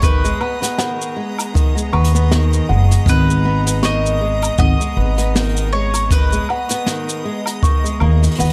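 Folktronica with a delicate, pastoral mood and a gentle swing, cut from a longer piece, where a round, double-strung mandolin carries the melody through digital delay over warm fingerpicked flamenco guitar arpeggios, while a sweet, bell-like small celesta adds a second line with delay and plate reverb, a clear, focused string quartet holds bowed chamber chords in the background, a woody pizzicato upright bass sits up front, a jazz brush kit plays hi-hat, shaker, snare and woodblock beside a boomy brushed kick drum that stops at 7.8 seconds, and a dreamy, reversed granular texture swells faintly behind it all under light reverb.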